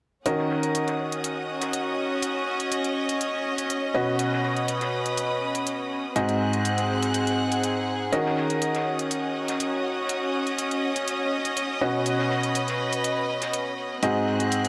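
A steady, straight 4/4 pulse at 122 BPM drives this bittersweet, soulful piano house excerpt in Eb minor, cut from a longer piece and moving through Ebm7, Badd9 and Ab7. An electronic hi-hat with an analog, tape-warm tone sets the groove, backed by a very quiet acoustic drum kit with a fat snare and a big-room sense of space. Up front, a bright grand piano with a brilliant yet worn character plays a riff from Ab2 to Eb5, trailed by delay. A clear symphonic string section adds a floating, pure texture with soft-attack sul tasto bowing, while a lush studio violin section holds sustained chords higher up, rich with vibrato and a smooth top. A moderate plate reverb ties the parts together from 0.3 s to 14.7 s.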